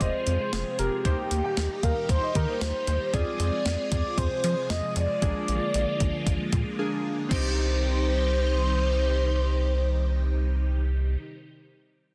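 A rubbery, hollow square bass sits up front in this nocturnal, driving synth-pop excerpt in C minor at 115 BPM, beneath a mellow, horn-like lead with warbling chorus and delay, round analog keys with phaser, a swirling, vintage string machine holding sustained chords, and a background concert grand piano with delay that returns at 7.3 s, while a thumpy, sampler-style 12-bit drum machine with crash, hi-hat, kick and snare drives the groove until 7.4 s.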